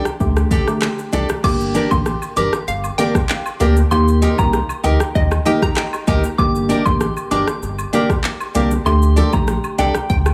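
A straight 4/4 dancehall groove from an up-front electronic afro-pop kit, with its deep kick, metallic hats, handclaps, rim click, shaker and crash, drives this tough, sultry clip, joined by a deep, full sub bass with octave, dark, hollow percussive organ stabs, a mellow FM synth bell melody, full-bodied picked steel-string acoustic guitar arpeggios with finger squeak, very quiet cabasa and woodblock, and a bright, bouncy detuned square pluck second line from 2.7 to 6.2 seconds that returns briefly at 10.1 seconds. Everything is set in an echo-heavy mix with small room ambience and dub echo on most parts.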